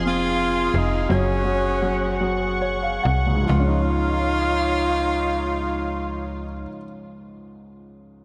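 Soaked in a dreamy plate reverb, this tender, heartfelt six-eight pop ballad in Db major drifts at 44-60 BPM, slowing over its first 3.5 seconds as a clear, up-front tenor saxophone sings a jazz-style melody with vibrato, scooped notes and delay over an evolving, detuned sawtooth pad with chorus, a snappy, metallic FM bass and a warm baby grand piano, which adds a fill at 2.2 seconds and plays alone after the others stop at 6.7 seconds, while the chords move from Fm through Gbsus2 to Dbadd9.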